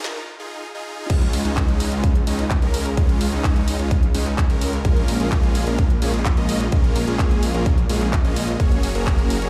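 A straight 4/4 pulse drives this short cut from a festival progressive house track, emotional and anthemic in mood. It opens on a brief build-up with a drum fill and a break, then the drop lands at 1.1 seconds as a punchy, layered electronic kick enters up front and holds until 9.2 seconds. A big-room dance kit with a punchy snare, handclaps, hi-hat and crash cymbal sits further back in the mix. Huge, lush supersaw chords carry the riff with a fast attack and sustained tone, pumping against the sidechain and trailed by a digital delay, moving through Ebsus2, Db, Bbm7 and Gbadd9. Beneath them a thick detuned saw bass with a sine core adds chorus and tube saturation, filtered at the low end and also pumping with the sidechain. Everything sounds as if played on a big sound system in a bare room, bathed in large studio reverb.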